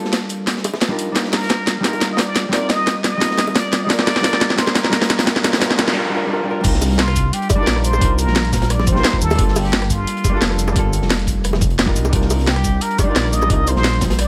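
A straight liquid drum and bass groove drives this dreamy, lush passage, cut from a longer piece. Up front, a layered electronic kit with a cracking snare, bright hats, rim clicks, shaker and crash sits over a knocking electronic kick, while a gritty, saturated breakbeat kit with a rolled-off top and tight, high-tuned bongos played with soft hands sit in the background. Underneath, a deep, rumbling detuned saw bass beats with tube saturation, and a clean, fingered hollow-body jazz guitar adds dark, compressed chords through tape echo, moving between minor ninth, minor eleventh and sixth harmonies. From 1.3 seconds a forceful, plunger-muted trumpet takes the solo melody with a wah-wah bite, light vibrato and a distant, roomy tone trailed by digital delay. A drum fill drives the build-up into a brief break at 6.0 seconds, while a noise sweep that enters in the background at 5.6 seconds carries through to the drop at 6.6 seconds, all under a light reverb.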